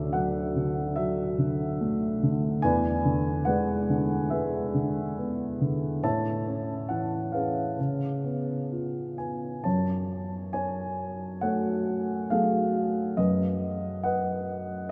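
A dark, woody upright piano sits up front with a mellow tone and long sustain, playing a lyrical classical solo in 4/4 at a loose, rubato 61-73 BPM. The chords move from Dadd9 through E7, Aadd9 and C#7 before settling at 9.7 s into F# harmonic minor on F#madd9 and B/F#, all bathed in a cathedral reverb with a 5.2-second tail. The mood is peaceful and warm in this short passage cut from a longer piece.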